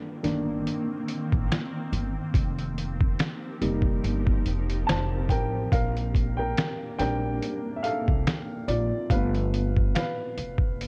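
A relaxed 71 BPM groove in 4/4, with a light 16th-note swing, sets a reflective, hazy lo-fi hip hop mood in C dorian. The sampler-style kit sits up front, compressed and pitched down, with a thumpy kick, a medium-tuned snare, hi-hat and finger snaps, all muffled and tape-softened, entering with the pizzicato upright bass at 0.2 seconds. The bass is woody and dark, with gut strings and a low, rounded body. The dark, boxy upright piano carries a solo across the whole excerpt, its mellow tone dulled by cassette tape and a low-pass filter as it moves through Cm7/G, F7sus4, Bb6 and G7. Behind it, a granular cloud pad of detuned sine voices drifts in blurred, warbling sustained chords with a slow attack and its own reverb, ending at 9.1 seconds. Light reverb and a cassette sheen give the mix its vintage, lived-in character, and the piece is a short cut from a longer work.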